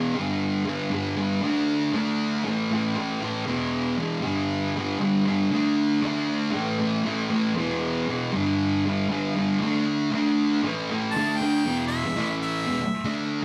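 A thick, double-tracked fuzz guitar sits up front, picking a menacing, gritty rock riff in a live stone room with moderate reverb, and a bright, overdriven harmonica with light vibrato joins it at 11.1 seconds to carry a short solo melody as this cut from a longer piece moves into a new section at 11.6 seconds.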